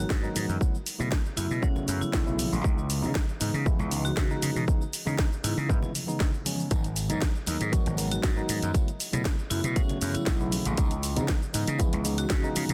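Nu-disco with a groovy, sleek feel, built on a punchy, up-front electronic kick, a house kit with cracking snare, hi-hat and shaker, and faint, distant congas and tambourine under an overdriven slap bass, a clean tine electric piano pumping with sidechain and dub echo through G#m7, B9sus4 and C#m7, and a metallic, ringing vibraphone melody with fast motor vibrato and digital delay sitting in the background, all in a dense, heavily limited modern master.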